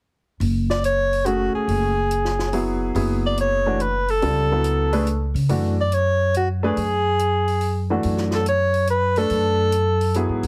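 A swung 3/4 pulse at 142 BPM drives this hypnotic, intense modal jazz excerpt in F# minor, where a woody pizzicato upright bass on steel strings and a compact cocktail kit of hi-hat and high-tuned snare in a tight booth start at 0.4 seconds, a mellow soprano saxophone with subtone and light vibrato takes the up-front solo from 0.7 seconds, and a brilliant, intimate upright piano with audible action noise joins at 1.3 seconds over an F#m9, all in light reverb with a heavily compressed radio sound.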